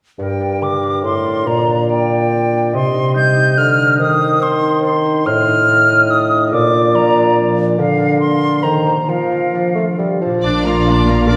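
Classical, stormy and restless in a rubato triple metre, this passage cut from a longer piece pairs a pure, up-front silver concert flute and a distant, roomy clarinet as second lines over a dark, smooth-topped bassoon and mellow, ringing concert harp arpeggios; the flute and bassoon drop out by 10.4 seconds as a chamber violin section takes the melody with vibrato, joined by a focused symphonic violin section on a second line, lush viola and cello sections in the background, a punchy French horn section holding sustained chords and a woody double bass section, heard from further back in a wet scoring-stage reverb.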